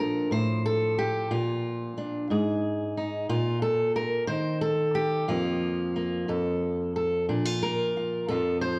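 A fingerpicked steel-string acoustic guitar sits up front in this peaceful, pastoral folk fragment, a brief solo passage cut from a longer piece in Bb major at 60 BPM in a straight 6/8. Its dark tone moves through F/A, Bb and Ab5 before a pause in the harmony, then settles through Fsus4 and F back to Bb. A moderate concert hall reverb surrounds the guitar across all 8.8 seconds, giving the whole a hushed, spacious glow.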